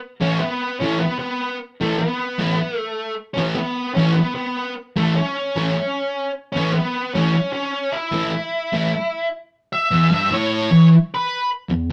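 Raw and rowdy, this short rock excerpt at 151 BPM puts a double-tracked thick fuzz guitar riff up front from 0.2 s, with a dark, distorted octave-fuzz lead guitar carrying the melody above it until 11.5 s, as the harmony moves from A to E5 at 9.7 s in a rough rehearsal-room sound with moderate reverb.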